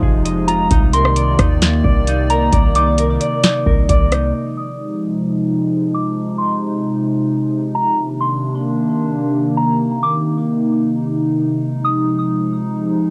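Hazy, lightly reverberant cassette home-recording sound frames this melancholic, atmospheric cloud-rap hip hop passage, cut from a longer piece, at 132 BPM in a half-time 4/4 feel: a booming analog drum machine with deep kick, crisp snare and metallic hats sits up front beside a deep, boomy 808-style sine bass, while fingerpicked, ringing Celtic harp arpeggios pass through analog delay, a hollow, flute-like, detuned pad holds Fm7 and Cm9 chords with sidechain pumping, and a pure, gentle FM synth bell melody shimmers with chorus and phaser; the drums and bass fall away by 4.3 s and the harp by 6.8 s, leaving pad and bell beneath a filter sweep, the bell ending at 12.1 s and the pad sustaining until 13.1 s.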